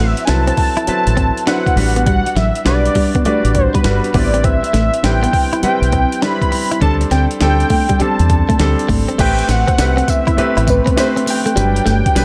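A thick, detuned unison lead enters at once with a bold sawtooth edge and vibrato, riding over a present, polished baby grand piano and a deep, round fingered electric bass in this confident, slick new jack swing excerpt. The groove sits at 101 BPM in 4/4 with a swung sixteenth feel in A dorian, and a sampler-style breakbeat kit joins at 0.2 seconds, its gritty, overdriven sound carrying a thumpy kick, high-tuned snare, hi-hat, tambourine and crash cymbal. A bright, clean electric guitar riff with subtle chorus sits in the background, while the dark, punchy bass sits up front in the mix alongside the piano and drums. The harmony moves through rich extended chords such as D13/A, Gmaj7/A and Cmaj7/A before a D7sus4, then shifts to a new section at 9.2 seconds on Am9 and Gmaj7. Light reverb gives the polished R&B sound a touch of space, and the passage is cut from a longer piece.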